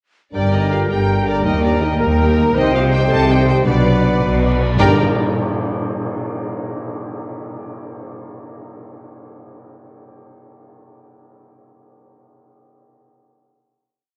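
Adventurous and swashbuckling, this short heroic film-score cue in 6/8 sets a lush, vibrato-rich violin section on the tune, doubled at the octave, over a second violin counter-melody, a rocking two-note viola figure, and up-front bowed double basses doubling the distant cello bass line. Airy flute and a very quiet, mellow cor anglais add chords in the rhythm of the tune, while dark, roomy French horns join the melody, and a distant bright trumpet, clear trombones and a ringing harp in broken chords fill out the brass and texture. Cymbal swells and gong strokes enter at 2.6 seconds, the band accents the final chord at 4.8 seconds, and the whole cue sits in a scoring-stage reverb with the worn, warbling pitch drift of old cassette tape.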